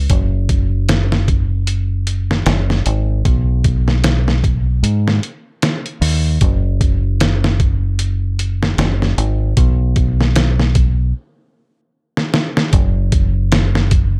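Trip hop with a melancholic, hypnotic mood, built on a slow 4/4 groove with a lazy swing on the sixteenths. A deep dub bass, played with the fingers, sits up front with a dark, round tone that sounds direct and amped, moving low in its register. Beside it, a sampler-style drum kit of kick, snare and hi-hat comes across compressed, pitched down and gritty, with a thumpy kick, a medium-tuned snare and a tape-warm character. The dry sound keeps both parts close and intimate. Around 11.2 seconds the groove stops, and a drum fill at 12.1 seconds leads into a brief new section before this excerpt from a longer piece cuts off.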